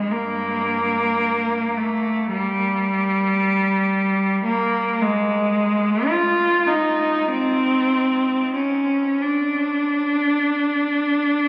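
A single bowed cello, clear and smooth with a gentle vibrato, carries this brief, nostalgic and serene classical fragment of unaccompanied playing that runs for 11.5 seconds, ranging from G2 to F4. The tempo drifts freely in a slow, rubato 4/4 at around 42-57 BPM, giving the even, expressive line a reflective, unhurried feel. The cello sits up front yet sounds distant, wrapped in a long cathedral reverb and the crackle of a very old 78 rpm record, so the fragment feels like a memory cut from a longer piece.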